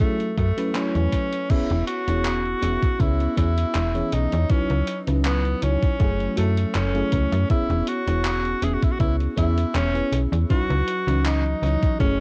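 This is a home recording on cassette with light reverb, cut from a longer dreamy, faded vaporwave piece with a gentle swing on the sixteenths. A lush, detuned FM electric piano layered with a soft pad carries the accompaniment, its mellow tone shimmering with tremolo, subtle chorus and tape echo. A clear tenor saxophone sits up front with the melody, punchy yet smooth on top, with a light vibrato and its own trailing tape echo. A thumpy electronic kick with 12-bit sampler grit anchors the groove, while a quieter gated 80s drum machine adds crash cymbal, handclaps and hi-hat through gated reverb, re-recorded in a small room. A snappy FM bass with a metallic attack and tube saturation enters at 0.4 s as the harmony cycles through F#m9, E6 and C#m11.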